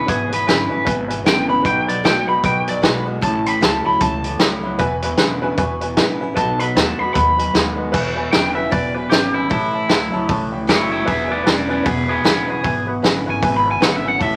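Rollicking and upbeat, this swung rockabilly excerpt in E major at 153 BPM puts a twangy, spring-reverbed lead electric guitar at the edge of break-up up front over a bright, phaser-tinged riff guitar through a small old amp, a very quiet picked steel-string acoustic, a woody upright piano, a thumpy pizzicato gut-string upright bass and a gritty, punchy vintage drum kit with dark cymbals, before a clean electric guitar solo enters at 7.9 seconds amid vinyl crackle and moderate studio reverb.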